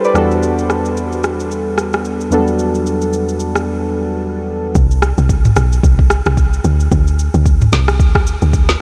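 Chorused analog keys with a round, evolving pulse-and-sawtooth tone open on an Em11 chord over a gritty, sampler-textured afro-pop drum kit of deep kick, woody snare, rim click, shaker and toms in this deep, hypnotic amapiano fragment at 111 BPM in E minor with a swung 16th-note feel, until a break at 3.7 seconds gives way at 4.8 seconds to a drop where the keys stop and a dark, percussive FM log drum bass with a noise layer comes up front, reaching Csus2 at 6.6 seconds, with the mix soaked in a dreamy, cavernous reverb.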